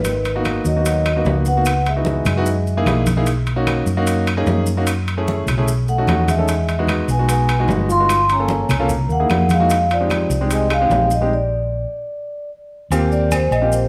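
A soft-mallet vibraphone carries the melody in this sunny, danceable Afro-Cuban jazz excerpt, its mellow, ringing tone sitting forward in the mix; it plays briefly at the start and then returns at 5.9 s. A breathy trombone follows the same entrances as a distant, whispered second line with light vibrato, dropping out at 11.3 s, where the arrangement reaches a stop. Underneath, a round, dark hollow-body electric bass sits up front and runs throughout at a brisk 149 BPM in straight 4/4, while a natural-sounding grand piano supplies up-front accompaniment. The percussion bed blends medium-tuned, thick-skinned congas, compressed and saturated metal-shell timbales with agogo bells, woody claves in the background, and grainy maracas. The harmony moves through rich extended chords, from Abm9 at the top to a closing Eb69, all within a moderate large-studio reverb.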